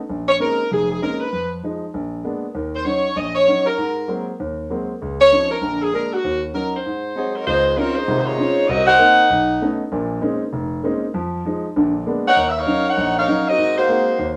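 A small, reverberant room holds a live jazz band. Over a vintage, smooth grand piano comping through the chords, a mellow saxophone section carries the melody up front in swinging, joyful ensemble style. The horns fall silent at 9.8 seconds and return at 12.3 seconds, while the piano keeps the swung feel going to the end of this cut from a longer piece.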